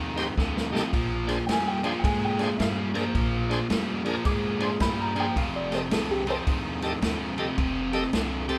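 A biting, overdriven electric guitar riff opens this laid-back, rollicking electric blues shuffle, joined at once by a woody, thumpy pizzicato upright bass. The tonewheel organ and a vintage drum kit arrive almost immediately, the organ gritty and shouting through a slow rotary speaker while the kit brings a punchy kick, a medium-tuned snare and dark ride cymbal, with a drum fill at 0.4 seconds. The groove sits at 108 BPM in 4/4 with a swung eighth-note feel, moving from F9 to Bb9 and back to F9. A clear, worn upright piano, slightly detuned and boxy with long sustain, takes the spotlight as a soloing second line from 1.5 seconds until 6.6 seconds. The guitar sits up front, and the whole band sounds as if playing live together in one small room with a wet, short reverb, in a brief cut from a longer piece.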